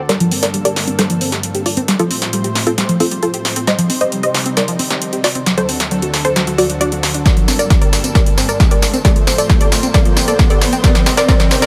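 A punchy, overdriven kick drum thumps up front from 7.3 s, joining an analog drum machine whose gritty snare, hi-hat and tambourine play a drum fill across this euphoric uplifting trance build-up, cut from a longer piece. Beneath them a thick, airy sawtooth pad holds sustained chords with chorus and sidechain pumping, while a tight, nasal sequenced synth runs arpeggios and a detuned, wave-folded unison pluck carries the soaring melody, both swept by filters and tinged with tape echo. From 4.8 s a riser climbs in the background, all set in a light reverb over a progression that cycles from Gmadd9 through F/A and Cm to D.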